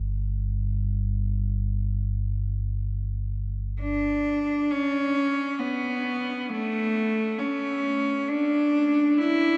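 Ambient music in free time, peaceful and weightless, opens with a deep, ominous rumbling drone on G1 that holds until 4.7 seconds, while a single bowed cello with a reedy gut-string tone, light vibrato and delay enters at 3.8 seconds and carries the melody between A3 and E4, all set in a huge, dark reverberant space in this excerpt cut from a longer piece.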